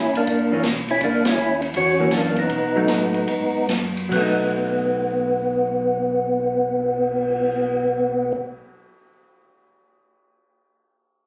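Soulful and bluesy, this brief soul jazz organ trio excerpt swings in 4/4 at 140-164 BPM in B mixolydian, with an up-front, fat, lightly overdriven percussive organ carrying the melody through slow rotary speaker and chorus vibrato, a mellow, round organ bass underneath, a dark, clean hollow-body guitar comping from 0.5 seconds, and a distant, roomy big-band drum kit with boomy kick, all caught on a phone in a club-like room as the tempo slows from 1.0 to 4.1 seconds around a band accent at 1.2 seconds over F#7 moving to B7.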